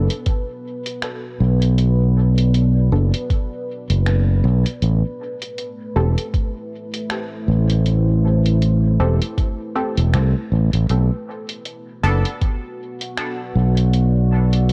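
Ambient dub at 79 BPM in 4/4 with a swung sixteenth feel, deep and meditative, moving from Bm7 to Am7 and back to Bm7 in this short cut from a longer piece. An overdriven, growly fingered electric bass sits up front with tube saturation, joined by a thumpy, pitched-down electronic kick and a muffled, tape-warm sampler-style kit of finger snaps and hi-hat. A dark, warbling sawtooth pad holds sustained chords with chorus and built-in reverb, while a muted, evolving filtered chord stab plucks through dub echo until 12.3 seconds, all captured on home cassette with little room reverb.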